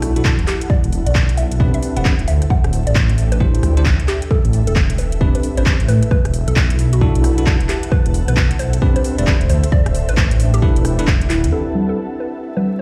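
A deep, rumbling detuned saw bass sits up front in this soulful, bouncy two-step UK garage excerpt at 133 BPM in A dorian, riding a punchy, tape-warm kick and a swung house kit of congas, handclaps, metallic hi-hats, rim click and shaker, with its hats, snare and percussion filtered. Bright, bell-like electric piano stabs with filter and tape echo move through Am11, D9sus4 and E9sus4 chords, while a hollow, mellow square pluck carries the melody through chorus and dub echo from 0.5 seconds. An ethereal, warbling pad pumps in the background, and the whole mix sounds played on a big sound system in a bare room, with large studio reverb and vinyl crackle, as the bass drops out at 11.5 seconds.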